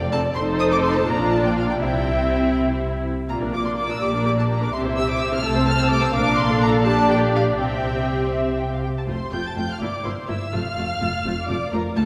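Spirited and graceful, this quick classical-period movement for string orchestra moves in 6/8 at 83 BPM, counted in dotted quarters, with a rubato feel in F major. Every section plays con sordino. The symphonic violins carry the melody high in their range with a lush, vibrato-rich voice, while the studio violins take a second line beneath them with a smooth top and light vibrato. The rich violas sit up front with the accompaniment, and the dark cellos and veiled double basses share the bass with soft attacks. The harmony moves through chords such as F7, Bb, Gm/Bb and C before a brief second section at 9.1 s settles on F, C9 and F again. A wet concert hall reverb of about 2.3 seconds places the ensemble further back in the room, in this short passage cut from a longer piece.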